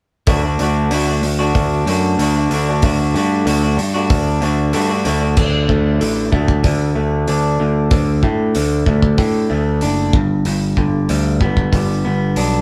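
A slightly broken-up electric guitar through a small old amp picks lo-fi arpeggios up front alongside a growly, bright picked bass and a loose acoustic drum kit with dark cymbals and a tight kick, as this cathartic, anthemic quiet-loud alternative rock excerpt, played live in one room, moves from D to D5 at 5.4 seconds and on to G at 10.1 seconds.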